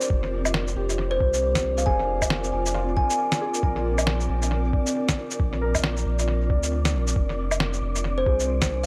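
A felt-muted upright piano sits softly in the background beside a cloudy, blurred granular pad with 12-bit grit, a breathy wind-like tuned noise texture and an overdriven, muffled shaker, woodblock and fat snare kit, before a round sub bass and a thumpy, pitched-down kick arrive at 0.1 seconds to set this rainy, nocturnal future garage excerpt pumping at 136 BPM with a 16th-note swing in F dorian, while a bright, woody kalimba with tape echo rings out its melody from 1.1 to 3.2 seconds and again from 8.2 seconds over Fm69, Bbadd9 and Fm6 chords in an echo-heavy mix bathed in spring reverb.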